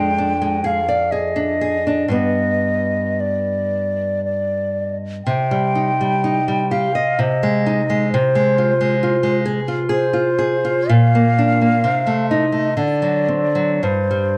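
Elegiac and yearning, this romantic duo for flute and classical guitar drifts in a rubato 3/4 at roughly 52-69 BPM, a short excerpt cut from a longer piece. A hollow, airy silver concert flute carries the melody up front with tongued notes and vibrato, set in plate reverb and analog delay, while a bright, fingerpicked nylon-string guitar with fresh strings supplies close, small-bodied accompaniment throughout. The harmony moves through diminished and minor colours such as Cm, Ab/C and Fm/C toward a D7 at 12.8 seconds, all heard through a moderate studio room and captured on cassette tape.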